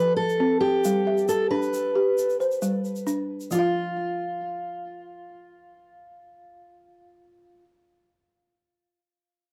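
Moving at 90 BPM in a straight-felt 12/8, this short cut from a longer West African traditional piece for strings and xylophone flows with a warm mood, the harmony passing from F to G before dropping away at 3.5 seconds. Up front, a fingerpicked steel-string acoustic guitar with fresh strings carries the melody through a tape echo, its finger squeak audible, while a woody, round balafon struck with soft rubber mallets spins arpeggios across a broader range alongside it. A grainy, bright tube shaker sits quietly in the mix and stops at 3.7 seconds, all within a moderate studio reverb and a dry, gritty recording.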